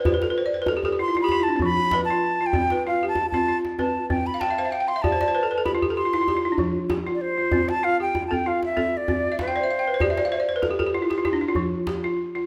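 Hypnotic and warm, this cut from a longer West African traditional piece sets woody, buzzing balafon arpeggios up front, struck with hard rubber mallets and breaking into fills, against tight, cracking djembe heard at a distance, while an airy, tongued silver concert flute, unsteady and touched with vibrato, carries the melody from 1.0 s to 10.6 s within a moderate recital-hall reverb.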